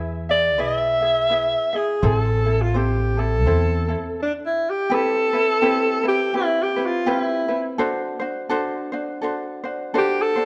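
Sunny and dreamy, this short Hawaiian-style piece cut from a longer performance moves at an easy, lilting swing in 4/4. A fingerpicked acoustic ukulele plays a light accompaniment throughout, its tone gentle and close. An upright bass, woody and plucked on steel strings, anchors the opening before dropping out at 3.9 seconds, just ahead of a brief stop from 4.2 to 4.9 seconds. The alto saxophone carries the melody as a pop-style solo from 0.3 seconds, its vibrato-laden voice sitting forward yet with a distant, roomy quality. After the stop the harmony turns brighter, moving from A minor into C major with a Cmaj7 giving way to D7. The recital hall reverb and dark, warm production wrap the whole performance in a soft glow.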